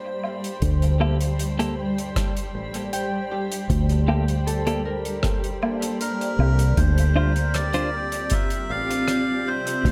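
Hazy and spacious, this ambient dub fragment moves at 78 BPM in straight 4/4 over a G minor add9 chord. A cloudy, detuned granular pad and a mellow, ringing Celtic harp with dub echo open the piece alongside a bright, bubbling stepped-filter texture in the background, while a soft-mallet kit of hi-hat, rim click and woodblock, a dry, deep electronic kick and an up-front, foam-muted fingered bass with tube saturation settle in beneath. Clean, compressed electric guitar stabs sit behind them with dub echo, and a reedy, breathy melodica carries the melody from 6.0 seconds in a light, small-room ambience.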